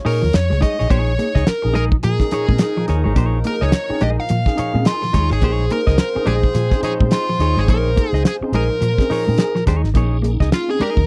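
Swung sixteenths at 106 BPM drive this sly, hypnotic Bb minor funk piece, where a cloth-damped, thuddy drum kit with a fat snare and tight kick sits up front beside a round, foam-muted fingered bass, while a nasal, overdriven lead guitar with a parked wah carries the melody over a clean hollow-body semi-hollow guitar, a dark, lushly chorused guitar riff, worn tine electric piano stabs with slapback echo entering at 0.9 s and a mellow horn section in the background, until a piping tonewheel organ with slow rotary speaker joins at 9.9 s as the lead guitar solos.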